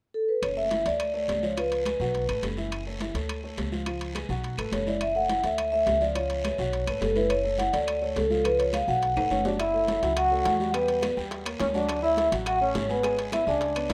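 Afro-Cuban jazz with a fiery, driving pulse, cut from a longer piece, where a mellow, up-front vibraphone played with soft mallets carries the melody over a warm grand piano, growly pizzicato upright bass, ringing timbales and congas, woody claves and a raspy guiro, until a drum fill at 9.2 seconds brings in a punchy, roomy trombone with vibrato on a second line and very quiet bongos, all in light reverb with a rough home-demo feel.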